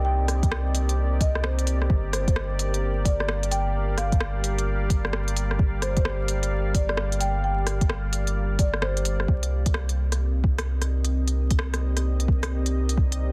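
The recording sounds dense and heavily limited, with vinyl crackle and a digital ambience wrapped around this nocturnal, rainy future garage fragment cut from a longer piece. A swung groove comes from an organic electronic kit, with crisp hi-hats, rim clicks and a softly clipped snare, sitting over a soft, up-front electronic kick. A round, sine-toned sub bass holds the low end, its sustained notes pumping with the sidechain. Above, a dark, detuned sawtooth pad with a sub octave swells in slowly through its chorus and built-in reverb, pumping as well while it carries Cm7 and Gm7 chords. A woody, close-miked marimba played with soft mallets sings the melody through vintage 12-bit sampler grit and analog delay until 9.2 seconds. Just before that, the kick briefly drops out from 8.8 seconds, and at 9.3 seconds the harmony returns to Cm7 as the pad, bass and drums carry on together.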